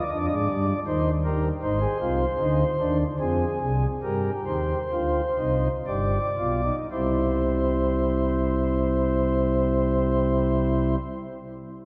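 Contemplative and solemn, this brief classical passage is cut from a longer piece, a baroque-style three-part fugue in 3/4 for pipe organ. The organ plays alone throughout its 11 seconds, voiced on soft flute stops with a romantic, warm colour and a tremulant that gives the tone a gentle waver. Sitting up front in the sound, it spans from deep pedal notes to a clear upper register, while a lush church reverb lets each chord hang in the air long after it sounds. The harmony moves through minor-key shades, from C minor and A-flat to F minor and a G7, before settling on a C major chord at 6.9 seconds. The pace steadily slows through the opening section, easing the music toward that resolution before a short closing passage begins.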